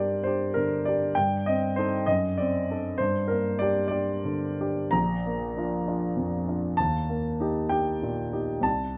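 Set in a moderate studio reverb, this brief, stormy and brooding romantic character piece for solo grand piano, natural and up front in tone, moves in 6/8 with uneven, rubato beats as it travels from a G5 opening through a D7/F# into Gm, then on to Bb and Eb, spanning from Bb1 to Bb5 before being cut off at 9.0 seconds as part of a longer work.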